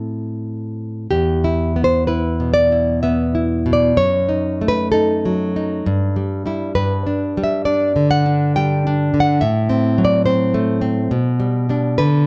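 The recording has a dark, intimate sound, set in a moderate recital hall reverb that lets each note hang for a moment after it is played. This romantic piece for solo classical guitar, cut from a longer work, moves in a triple metre with a freely breathing rubato feel. The nylon-string guitar sits up front with a warm, fingerpicked classical tone, covering a span from its deep low E up into the upper register. After a brief opening on A minor, a longer passage begins at 1.1 seconds, passing through diminished chords at 4.0 and 9.4 seconds that add a touch of tension before settling onto G. The overall mood is wistful and personal, like a private reflection.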